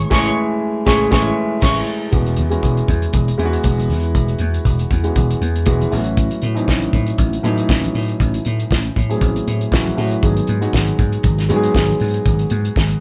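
Celebratory, danceable disco at 118 BPM in E major, cut from a longer piece, where a dark, bowed string section sings a brief vibrato line for the first 1.8 seconds over a mellow, up-front concert grand, a growly, punchy slap bass and a dry 70s kit with fat snare and tight kick hitting a band accent, before very quiet, thick-skinned congas join at 2.1 seconds as the chords move from Amaj7 through E69, A6 and G#m7 in a moderate live-room ambience.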